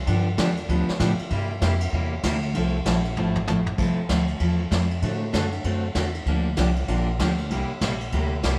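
A woody, thumpy pizzicato upright bass opens this brisk western swing excerpt in F major at 194 BPM, joined almost at once by an up-front picked dreadnought acoustic guitar and a vintage kit played with brushes, with dark cymbals and a punchy kick. The playful, down-home groove swings its eighth notes through G7, C7 and Fmaj7, and a drum fill at 3.2 seconds leads into a repeat of the section that moves through D7, Gm7 and C7. A moderate echo chamber reverb and small-room ambience give the short cut an intimate, old-time sound.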